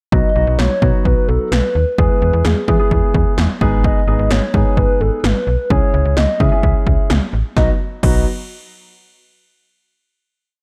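A whole short synth-pop piece in a nostalgic, bright mood opens at once with an overdriven, up-front 80s electronic drum kit of punchy kick, gated snare and crash in a straight drum-machine beat, a snappy, metallic FM slap bass in sequenced lines, and a concert grand piano playing syncopated, close-voiced chords. Over them a hollow, woody clarinet-like synth lead sings motif-based hook phrases with vibrato, chorus and slapback echo, as the harmony moves through B, E, G#m and C#m in a dry mix. The verse settles onto a final B chord at 7.6 seconds, with the drums ending at 8.1 seconds and the other parts at 8.2 seconds.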